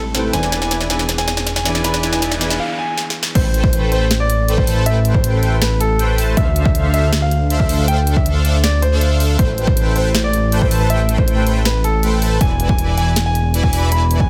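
Dreamy and lush, this short cut from a longer future bass piece moves in a half-time feel over a haze of digital ambience. It opens with a build-up where a soft, muted upright piano with thick felt and audible action noise pumps under sidechain and digital delay, while a bright, earthy chamber string section holds very quiet bowed chords until 2.6 seconds, and a faint riser and noise sweep climbs toward the drop. A fat, detuned analog bass sits up front from the start, and a smooth, mellow supersaw riff and a clear concert grand piano melody soon join, all three pumping against the beat, with the grand piano also trailing digital delay. Trap drums bring a sharp snare and bright, filtered hats through fills before a short break, and at 3.4 seconds the drop lands with a punchy, overdriven electronic kick re-recorded in a large room. From there the chords cycle through Am7, Dm9, Am7 and back to E7, and the noise sweep returns briefly just before the cut.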